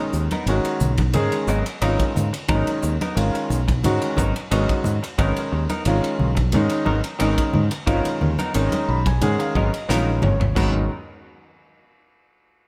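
A short-sustained grand piano with analog chorus opens this intense, slick electric jazz fusion passage, joined almost at once by a dark, round fingered bass up front, a modern studio drum kit with a punchy kick in a pumping room, thick-skinned congas in the background, and clean, compressed semi-hollow guitar stabs bathed in lush chorus and digital delay, before a piano fill at 8.5 seconds and a drum fill at 9.9 seconds, all set in plate reverb with bright 1980s-style digital production.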